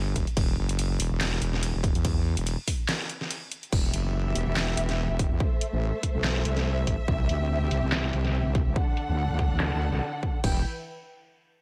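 Heavy and chaotic, this excerpt of wobble dubstep runs at 143 BPM in a half-time 4/4 feel with a light swing, set in E minor. It opens on a drop, with the wobble bass sounding from 0.0 seconds, a saturated sawtooth-and-sine tone thickened by chorus and overdrive, pressed up front between E1 and E2. A punchy electronic kick and a layered dubstep kit of deep snare, handclaps, hi-hat and crash cymbal arrive at 0.2 seconds, re-recorded in a large room yet kept close, with low-pass filtering dulling the hats, snare, cymbals and room. After a short break, a dark, bowed string section enters at 3.7 seconds with lush, vibrato-rich sustained chords, pumping against the sidechain as the harmony moves through Em, Am, C and D while a filter sweep works across the drums. The mix stays dry, with little reverb, leaving the heavy, mellow bass and thumping kick to dominate the sound.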